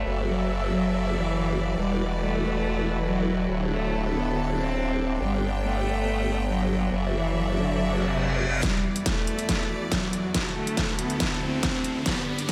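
Soaked in a lush hall reverb, this dreamy yet heavy, aggressive half-time wobble dubstep excerpt at 140 BPM sets a rich, smooth bowed cello melody with vibrato and diffuse ambient delay over clear, focused sustained chords from a studio string section with sidechain pumping, while a bright, saturated formant-sweep wobble bass with chorus and overdrive sits up front until 8.6 seconds, a background reverse cymbal and riser arrives at 7.9 seconds, and from 8.6 seconds an overdriven, punchy electronic kick and an up-front dubstep kit with a deep snare and hi-hat play a drum fill through the build-up.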